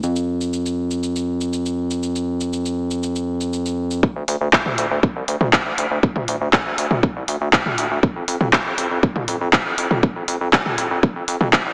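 Melodic techno at 120 BPM, melancholic and cinematic, cut from a longer piece, where a gritty, saturated synth bass pumps low between C2 and F2 beneath smooth hats, handclaps, shaker and toms, with a punchy, tape-warm kick entering at 4.0 s to launch a build-up, all set in a lush hall reverb and squeezed through a heavily compressed, small-speaker radio sound.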